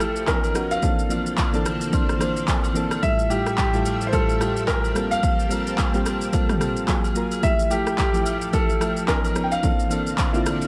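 A light reverb gives this relaxed, warm amapiano excerpt a soft sheen, moving at 109 BPM in 4/4 with a swung sixteenth-note feel in F major. Up front, an overdriven, layered deep house drum kit drives the groove with a punchy kick, handclaps, rim click, shaker and toms. Behind it, distant agogo bells and woodblock sit in a large-room acoustic space, joined by tube shaker and group handclap. Round, warbling synth keys with a mellow, vintage electric-piano character and chorus play accompaniment, while a lush sawtooth string machine with a sub octave, ensemble chorus and sidechain pumping holds sustained chords in the background. A clear grand piano carries the melody between G4 and G5 through a digital delay, stopping at 10.3 seconds, over rich harmony that slides from Bmaj9#11 to Bbmaj9#11, Fmaj9/A, Gm11, Gbmaj9 and Fmaj9 before returning to Bmaj9#11 and Bbmaj9#11.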